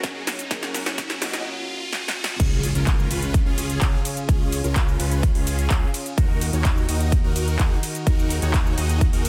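A dense, heavily limited modern master with digital ambience frames this anthemic, uplifting slice of festival progressive house. It opens on a build-up in which a soft, mellow felt-muted upright piano with audible action noise and tape echo sits under a lush, bright unison pad, huge detuned supersaw chords carrying phaser and chorus, drum fills from a big-room kit with a punchy snare and metallic hats, a punchy electronic kick up front, and a riser in the background. At 2.4 s the piano stops and the drop lands with an impact, as a fat, saturated analog bass enters and pumps under sidechain alongside the pad and supersaw riff, with the kick dropping out at 9.1 s.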